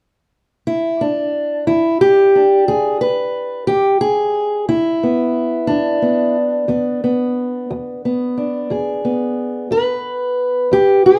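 After a brief silence, a fingerpicked steel-string acoustic guitar enters at 0.7 seconds and carries this short fragment of acoustic country blues by itself. The mood is swaggering and rollicking, rolling along in a slow 12/8 metre with a straight feel. The guitar has the dark, boxy voice of a parlour instrument strung with fresh strings, and it sits up front in the mix, ranging from E2 to B4. It opens over unaccompanied picking before settling onto an E7 chord at 1.7 seconds, where it stays until the guitar stops at 11.2 seconds. A moderate, roomy studio reverb surrounds the playing, giving the sense of a performance captured live in a single room.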